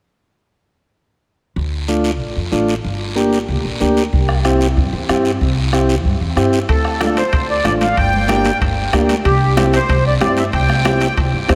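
This fiery, driving cumbia excerpt opens at 1.6 seconds with a woody, thumpy pizzicato upright bass and a raspy guiro, and a vintage, clean combo organ comes in moments later, sitting up front over a D minor progression of Dm, Gm and C. At 187 BPM in a straight 4/4, the groove gains weight at 4.1 seconds when a soft-beater bombo enters in the background. At 6.7 seconds the second section begins. A sweet, dark, smooth accordion takes the melody up front, its reedy voice carrying a light tremolo tuning and a diffuse ambient delay. At the same moment, bright, high-tuned congas played with soft hands join from a distance, along with very quiet, ringing metal-shell timbales. A huge ambient reverb gives the mix a dreamy, soaked quality that contrasts with the urgency of the beat.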